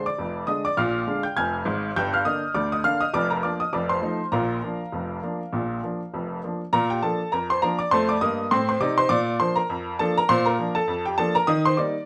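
A bright upright piano carries this cheerful, jaunty ragtime piece alone from start to finish, its woody, slightly detuned tone sitting up front with audible action noise and a long sustain. The playing spans from F1 up to Ab6 in Bb major, moving at 101 BPM in 2/4 with a light 56% swing on the sixteenths. The harmony opens on Bb7, passes through Gm and F7, and settles on Bb by 4.3 seconds before a new section begins at 6.7 seconds and cycles through F7 and Bb again, reaching Eb near the close. A moderate studio reverb gives the instrument an intimate sense of space while keeping it present. The recording is cut from a longer piece and runs about 12.1 seconds.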